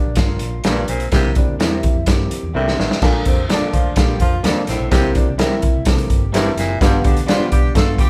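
Uplifting and warm, this brief cut from an uptempo 1960s-style soul tune rides a punchy, up-front vintage drum kit with a pumping small-room sound, a round foam-muted electric bass sitting in the background, and a dark, woody upright piano playing the accompaniment. Two slightly broken-up electric guitars through a small old amp stay behind, one picking a twangy riff and the other adding lo-fi, compressed stabs, while a raspy, gritty baritone saxophone carries its own riff. After a drum fill at 2.5 seconds, a clear, close-miked saxophone section enters at 3.3 seconds with a second line full of jazz-style vibrato, all under light reverb that feels like a band playing live in one room.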